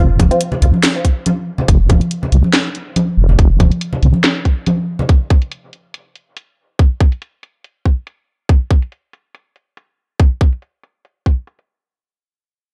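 The production is dark and dry, with very little room sound, giving this brooding stretch of deep dubstep a close, heavy presence. A deep, soft wobble bass opens the excerpt, its detuned sawtooth-and-sine tone thickened by chorus and tube saturation and held up front until it drops away at 4.1 seconds. From 0.2 seconds an overdriven electronic kick, tight and forward, anchors the half-time feel alongside a layered garage drum kit, whose cracking snare and low-pass filtered hi-hats carry a slight swing. Congas played with soft hands add a compressed, saturated acoustic texture trailed by dub echo, then fall silent at 5.1 seconds. After that the kick and kit carry on alone, keeping the mood brooding to the end.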